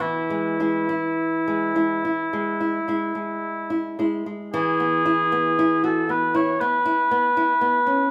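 This romantic duo for oboe and classical guitar is tender and lyrical, moving freely in 4/4 at roughly 51-60 BPM in E major, tuned to A4 = 436 Hz. A mellow, soft-attacked oboe carries the classical-style melody with a distant, roomy character, while a small, bright nylon-string guitar with fresh strings supplies fingerpicked accompaniment, both parts sitting up front. The two play live together in a large studio, bathed in a wet reverb of 1.4 s, and this short passage is cut from a longer piece.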